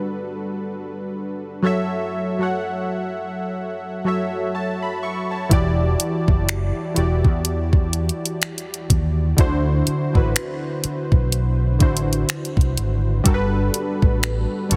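Contemporary R&B at a slow 62 BPM in E dorian, moody and longing, with a swung 16th-note feel. Warm analog keys open alone, their detuned sawtooth and square-wave tones thickened by a sub octave, chorus and a filter sweep, and they move through Gmaj9, F#m7, Em9 and D9 chords. At 5.5 seconds a dark, round fingered electric bass enters with a produced electronic drum kit of finger snaps, soft kick, hi-hat and a softly clipped snare, the drums set up front in a dry, dense, heavily limited modern mix.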